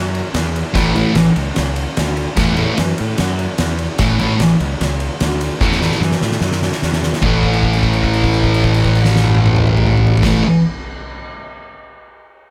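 A fuzzed, overdriven fingered bass opens this rowdy, raw garage rock excerpt in A major, with an oversized, low-tuned drum kit joining at once in a bright stone room that pumps around a fat snare and punchy kick. At 0.7 seconds a thick, double-tracked fuzz guitar takes up the picked riff, sitting loudest and up front over the round bass at a driving, straight 148 BPM in 4/4. A drum fill from 5.6 seconds leads into a new section at 7.2 seconds built on a long held note, all under a light reverb.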